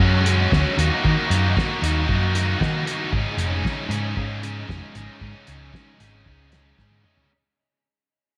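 A straight 4/4 pulse drives this upbeat, jangly indie rock clip, cut from a longer piece and fading out throughout, as a bright, scooped high-gain guitar sits up front beside an overdriven guitar coloured by ensemble chorus and tape echo, both playing riffs over Gbsus2, Ebm and Absus4, while a round, hollow-body short-scale picked bass holds the low end and a dry, cloth-damped kit with a fat snare and tight kick thuds along before a drum fill at 6.8 seconds, set in a lightly reverberant space.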